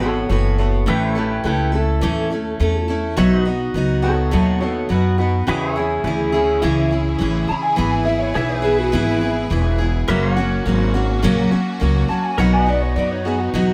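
A straight 4/4 pulse at 104 BPM sets an easygoing, down-home honky-tonk and classic country groove in this short section cut from a longer piece. The upright bass sits up front with a woody, thumpy pizzicato on gut strings, while a full-bodied dreadnought acoustic guitar, also up front, supplies bright picked accompaniment. Over them, an electric guitar through a small old amp carries a clean, twangy solo line for the full 13.7 seconds, slightly broken-up and colored by analog chorus and tape echo. In the background, pedal steel guitar holds sustained chords with fingerpicks, slide and volume swells, its tone compressed, warm and clean, and at 5.5 seconds a lush symphonic string section joins with bowed, vibrato-rich ensemble chords. The harmony moves from Bsus4 through A, B, C#m, E and F# before returning to B, and the close, detailed microphones and light reverb keep the sound intimate.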